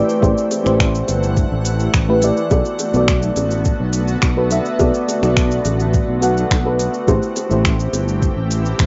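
A soft, tape-warm electronic kick anchors a straight, unhurried 4/4 groove alongside smooth finger snaps, cabasa and hi-hat from a produced R&B kit and tight, high-tuned bongos played with soft hands, sitting close and dry in the background until about 8.1 seconds. This short excerpt from a longer sunset chillout piece feels wistful and smooth, drifting from Am7 to Bm7 and back. A fretless electric bass sits up front with a bright, growly, amped tone and ensemble chorus, sustaining low notes beneath everything. A mellow FM electric piano carries the accompaniment with a round, warbling, vintage character and a faint noise layer, its fast-attack notes decaying through chorus, delay and plate reverb. Behind it, a shimmering, ethereal pad of detuned sine voices with an octave-up, granular glow swells in slowly and holds long, softened further by chorus and reverb. The rough home-demo mix sounds dull at the top and is bathed in a wet studio reverb.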